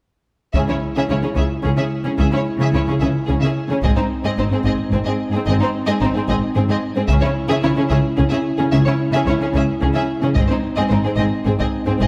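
Close, dry taiko drums struck with heavy sticks drive this epic, heroic orchestral film cue, which is cut from a longer piece and moves at 73 BPM in a straight 6/8, counted in dotted quarters. Nearly every part enters together at about 0.6 seconds. A focused, warmly vibrato-laden violin section carries the melody while a distant second violin line adds expressive portamento. Mellow, roomy French horns hold sustained chords, and a close, even viola section fills in the accompaniment. Underneath, an intense, bright double bass section and a smooth-topped cello section anchor the low end. The whole passage is one building section in C# harmonic minor, alternating between C# minor and G# and set in a moderate scoring-stage reverb.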